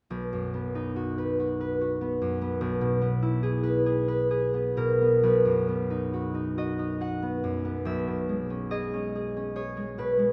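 This classical solo harp piece, cut from a longer work, unfolds in a graceful, peaceful mood at a relaxed 69 BPM in 3/4. The beats fall unevenly with a gentle rubato, giving the lilting triple metre a breathing, unhurried quality. A fingerpicked concert harp carries everything alone from 0.1 seconds to 10.3 seconds, its up-front, ringing tone spanning from a deep B1 to F#5. The harmony rests in B major, moving from B to E/B, then returning to B before settling onto C#m7/B at 7.9 seconds, with a second phrase beginning at 5.2 seconds. A wet church reverb with a three-second decay surrounds the acoustic instrument in a spacious, glowing halo. The tuning sits slightly below standard pitch, at A4 = 436 Hz.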